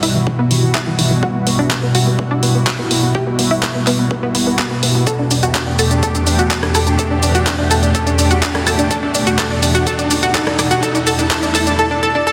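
A thick, detuned unison pad anchors this emotional, expansive progressive house excerpt at 125 BPM, holding sustained chords from Emadd9 to Gadd9/E with chorus, phaser, 12-bit sampler grit and sidechain pumping up front. A round sawtooth pluck plays arpeggios through cassette tape coloring, lush chorus and digital delay under a filter sweep across the whole build-up, while a tape-warm deep house kit of handclaps, hi-hat, rim click and shaker sits forward over a very quiet, deep electronic kick. A faint riser enters at 1.8 s, and the mix carries a moderate hall reverb and a heavily compressed, radio-like sound.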